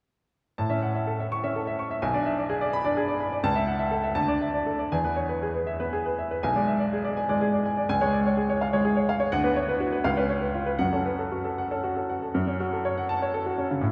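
A 6/8 pulse, pushed and pulled with rubato, carries this short cut from a longer classical virtuoso piano study. A solo baby grand plays from 0.6 seconds, with a clear, slightly worn tone and short sustain, covering a broad span from B1 up to C#6. The mood is sparkling and heroic, with the harmony moving through changing chords across the opening section. At 12.4 seconds a new section begins, and the recording breaks off at 13.9 seconds. A lush concert hall reverb surrounds the piano, and the instrument sounds as though heard from further back in the room.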